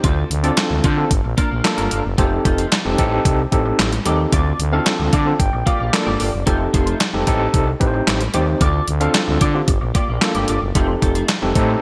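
Early-eighties boogie funk in G minor at 112 BPM, this short late-night cut from a longer piece runs a straight 4/4 groove on a detuned 8-bit drum machine with a thumpy kick, handclaps, hi-hat and a medium-tuned snare treated with gated reverb, under a growling, thick FM bass that sits up front. A barky, gritty tine electric piano with fast tremolo comps through a cycling Dm7, Gm7, F7 and Am7b5 progression and takes a fill from 4.9 to 6.5 seconds, while a clean, twangy electric guitar with analog chorus picks out a compressed riff. The bright 1980s-style digital production carries light reverb.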